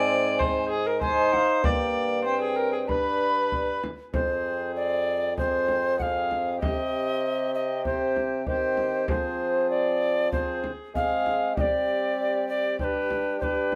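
A renaissance-style consort dance in a solemn, rustic mood, moving at a straight 97 BPM in 4/4 and cut from a longer piece. An up-front alto recorder carries the melody with an airy, chiffy, tongued tone and expressive vibrato, while a distant, reedy viola with gut-string colour plays a second line, a clear, roomy trombone accompanies, and a mellow bassoon holds the bass. A deep frame drum joins at 0.4 seconds, and under light reverb the harmony passes through Ab, Gsus4 and G, then moves through F minor and C minor from 4.1 seconds before returning to Gsus4 and G.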